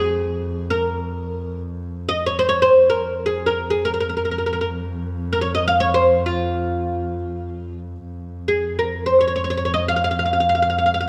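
A moderate scoring-stage reverb lends this melancholic, hypnotic Arabic maqam ensemble piece a spacious sound. The fretless oud, plucked with a plectrum on its double strings, carries the melody up front with a woody, deep tone. A close, rich bowed double bass sustains a low drone beneath it, shaped by expressive vibrato and portamento, and the opening material returns at 8.0 s before this excerpt of a longer piece cuts off at 11.1 s.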